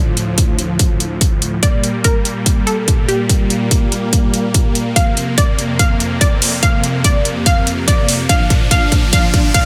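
A half-time 4/4 pulse at 144 BPM drives this aggressive, menacing heavy wobble dubstep build-up, cut from a longer piece, where huge, detuned supersaw chords with sidechain pumping move through Dm, Gm, F5 and Bb beneath a lush, punchy unison pluck melody trailed by digital delay, while an up-front punchy electronic kick and metallic, high-passed electronic hi-hats with tape-warm character push into a drum fill at 5.0 seconds, and a background riser enters at 7.2 seconds under light reverb.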